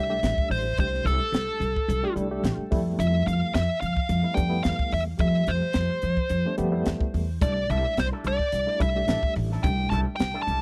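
Electric jazz fusion with a bright, soaring mood, led by a nasal, overdriven guitar with a parked wah and tape echo carrying the melody over a barky reed electric piano with fast tremolo that adds a fill at 1.9 seconds, a woody, thumpy upright bass up front, and a crisp drum kit with a high-tuned snare, while a twangy envelope-filtered guitar slips in with background stabs at 7.4 seconds, all in a dry, close 1970s-style studio sound.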